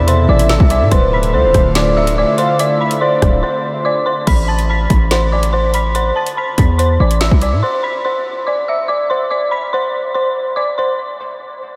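An eerie, inharmonic FM synth bell carries the melody up front in this cold, menacing half-time drill hip hop excerpt, joined at first by a round, octave-layered synth lead in the background and an airy, breathy pad holding sustained chords until about 4.2 seconds, while a punchy sine 808 bass and an electronic drill kit with a hard-clipped kick, woody snare and metallic hats drive the track until roughly 7.6 seconds, leaving the bell alone to 11.0 seconds in a dreamy mix soaked in huge ambient reverb.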